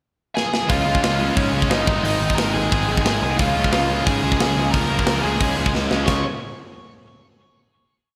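Energetic and upbeat, this short punk rock piece in Db major charges along at 178 BPM in a straight 4/4, as a tight metal drum kit with a gritty, saturated snap and a drum fill enters at 0.4 seconds within the pickup bar alongside a bluesy distorted lead guitar playing motif-based phrases partly doubled in octaves with slapback echo and delay, before two bright rhythm guitars, one distorted and one overdriven, driving eighth-note power and barre chords, a very quiet double-tracked scooped high-gain guitar ringing chords, and a growly fuzz bass enter at 0.7 seconds for a chorus moving from Db through Ab and Bbm/Db, closing on a final Db5 chord at 6.1 seconds in a big arena sound with recital hall reverb.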